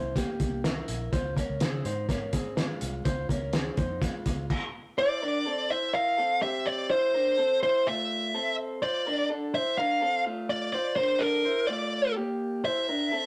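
A rough rehearsal-room recording with moderate studio reverb opens this bright, nostalgic excerpt of jangly indie pop in F major, moving at 125 BPM in a straight 4/4. A slightly broken-up electric guitar through a small old amp plays compressed, picked arpeggios up front throughout, moving over C7 and Dbmaj7. Beneath it, a foam-muted vintage fingered bass with a round, punchy tone and a cloth-damped thuddy drum kit, with dark cymbals, a fat snare and a tight kick, carry the opening until the band stops at 4.5 seconds. At 5.0 seconds a dark, distorted fuzz lead guitar takes the melody in a higher register, sitting loudest in the mix over Fmaj7 as the arpeggios continue beneath it. The passage turns back to C7 at 12.4 seconds before the cut at 13.3 seconds, leaving a gritty, lo-fi character in the playing.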